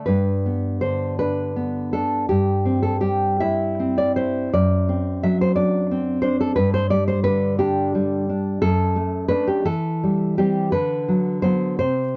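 A solo nylon-string guitar, thumb-plucked with fresh strings and a deep, up-front classical tone, opens this tender, nostalgic romantic fragment in G major, unfolding in a rubato 6/8 at about 50-60 BPM (dotted quarters) through chords that move from G and C/G to D7/F# and on to Bm/D at 10.7 seconds, captured in a dry, close 1970s-style studio sound with light reverb and tuned to A4 = 438 Hz.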